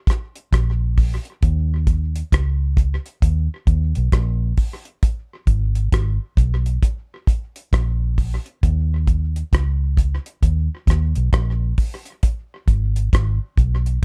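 A laid-back, serious roots reggae groove at 67 BPM in 4/4 with a swung sixteenth-note feel, built on a damped, dry 70s drum kit of hi-hat, tight kick and rim click from 0.1 seconds, joined at 0.5 seconds by a round, foam-muted fingered electric bass moving between Ab1 and Eb2, both parts up front in a dark, warm production with little reverb.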